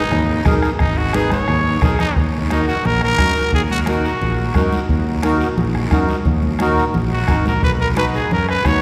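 Bathed in a lingering cathedral reverb, this fiery, passionate cumbia fragment in Eb minor moves at 176 BPM, led by a gritty, growling trumpet up front that solos from the start to 2.2 s, carries on until 4.7 s, and returns at 7.1 s, over a reedy, sweet accordion with light tremolo tuning, a punchy, direct fingered electric bass, a raspy guiro, and a soft-beater bombo and thick-skinned congas in the background, with a drum fill arriving at 1.3 s.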